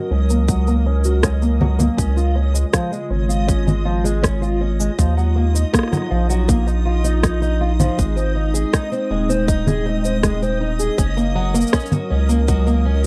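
A straight 4/4 pulse at 80 BPM comes from an overdriven electronic kick and an up-front, overdriven mix of electronic shaker, rim click and congas, beneath a round, deep analog bass, in this pastoral, delicate folktronica excerpt in Ab mixolydian that moves from Gb through Db, Ebmadd9 and Ab back to Gb. A fingerpicked twelve-string acoustic guitar plays shimmering, octave-doubled arpeggios with audible finger squeak, colored by tape echo and a filter sweep across its 13.1 seconds. A nostalgic, warbling pad holds sustained chords through chorus, phaser and reverb, while a bright, reversed granular texture drifts high above, all captured in a dry, close 1970s-style studio sound.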